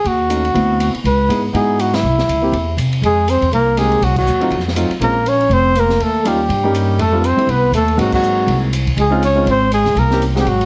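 A breathy, dark trumpet leads this fast small-group swing and bop excerpt, its scooped notes and vibrato sitting up front with a smooth top as it carries the melody in a swinging, late-night mood. Beneath it, a woody pizzicato upright bass with steel strings holds the low end close and present, while a grand piano fills in the harmony with a mellow glow. An acoustic drum kit in a small room keeps time on ride, hi-hat, snare, kick and crash, its dark cymbals, high-tuned snare and boomy kick sitting back in the mix with a rolled-off top. At 3.0 s the music settles into a minor key and a warm, soft-attack trombone enters as a second line, playing scooped notes in a jazz style. The whole band hits accents at 1.9, 4.1 and 8.1 seconds, and moderate studio reverb wraps the group in a heavily compressed, radio-like sound.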